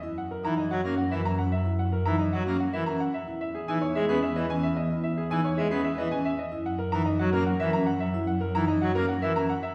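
Hypnotic and propulsive, this short cut from a longer classical piece in minimalist pattern style moves at 111 BPM in a straight 3/4. A bright grand piano carries the melody, its brilliant, smooth tone with a vintage edge and long sustain sitting up front. Beneath it, a vibraphone with medium mallets spins metallic, ringing arpeggios colored by a slow motor vibrato. A rich chamber double bass section, bowed and expressive with vibrato, holds the low end close and up front. A full pipe organ enters at 0.4 seconds with majestic accompaniment, its mixtures and romantic voicing adding grandeur. The harmony moves from F#7 to Emaj7 and back to F#7, all set in a reverberant scoring-stage space heard from further back in the room.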